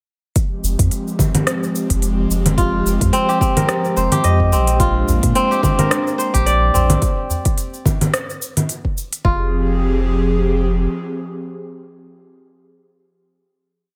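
Meditative and mystical, this short organic downtempo piece in F dorian moves at 108 BPM with a gentle swing, as an airy, breathy pad with chorus and sidechain pumping holds Fm7 and Bb7 chords over an overdriven electronic kick, a crisp organic kit of cabasa, congas, hi-hat and rim click, and a round sine sub bass riff, while a bright, ringing fingerpicked kora arpeggio with tape echo enters at 2.6 seconds, a very quiet udu adds hand-drum colour from 5.1 seconds, and the groove gives way to a final Fm chord at 9.2 seconds in a light digital ambience.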